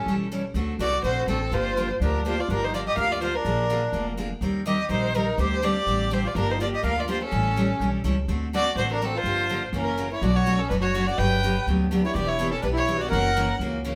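A rich, boxy bowed violin leads this fiery, swinging passage of acoustic string swing in jazz manouche style at 248 BPM, singing the melody with expressive vibrato and portamento while a reedy, close-miked accordion with slow beating adds a full, dry second line. Underneath, a bright picked steel-string acoustic guitar with fresh strings plays the accompaniment, and a woody, thumpy upright bass with gut strings holds down a dark pizzicato low end, with violin, guitar and bass all up front. The band plays live in one stone room with a wet reverb, and at 10.2 s the tune moves from G minor into B minor for a new section before this cut from a longer piece ends at 13.9 s.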